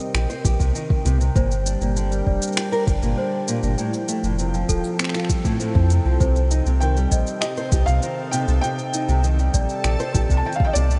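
Gently reverberant with a rolled-off top, this wistful, autumnal folktronica piece at 99 BPM in C dorian blends fingerpicked nylon-string guitar arpeggios through analog delay, a warbling, detuned tape-like pad, a delicate bell-like celesta second line with tape echo, a round, deep analog bass up front, and a soft overdriven electronic kick with overdriven finger snaps and shaker, before a muted felt upright piano melody enters at 6.8 seconds and a reversed, granular swelling texture drifts in behind it at 7.8 seconds.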